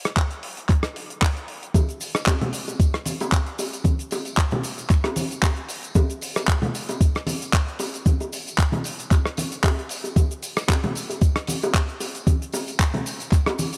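Sunny and groovy, this nu-disco excerpt swings its 16ths as a thumpy, sampler-style electronic kick sits up front beside a damped, dry 70s drum kit of handclaps, hi-hat, rim click and shaker with a rolled-off top, while tambourine, congas and bongos with a vintage, band-limited tone join at 1.7 seconds, all within light reverb and small room ambience.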